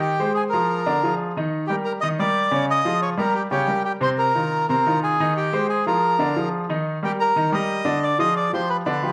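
A straight, danceable 4/4 pulse at 180 BPM drives this fiery latin fragment, where a reedy, breathy melodica carries the melody up front from G4 to Eb6 over a clear grand piano accompaniment, both playing throughout the 9.1 seconds in a large studio reverb as the harmony moves from Fm9 and Bb7 to Ebmaj7 and closes on Dm7b5.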